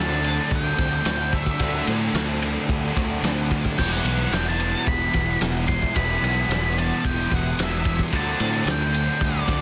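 A dark, fuzzed octave lead guitar with digital delay carries the melody over a thick, chorused fuzz riff, a biting overdriven guitar washed in reverse reverb, a growling fingered bass, a loose indie drum kit with a fat snare and punchy kick entering at 0.2 seconds, a jingly tambourine, a shimmering twelve-string acoustic arpeggio and a very quiet sawtooth string-machine cello pad in this hazy, brooding 110 BPM shoegaze and dream pop excerpt, moving from D7sus4 to Emadd9 in a dense, heavily limited, dry mix.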